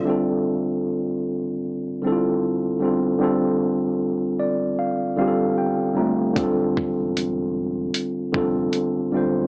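A worn, slightly out-of-tune tine electric piano sits up front in this reflective, hazy lo-fi hip hop fragment, its clean, direct tone coloured by cassette tape as it carries the accompaniment from the start. At 76 BPM in 4/4 with a swung sixteenth-note feel, the piano moves through Dm9, G5 and Dm7 in D minor. At 6.4 seconds a deep, sine-toned sub bass with an added octave arrives in the background, its fast attack giving way to full, sustained low notes. The dusty soul sampler-style drum kit enters at the same moment, gritty and compressed with a thumpy kick and hi-hat, sitting up front with its own tape-warm character before dropping out at 8.9 seconds. Light reverb and the small-speaker sound of a home cassette recording lend the whole fragment a hazy quality.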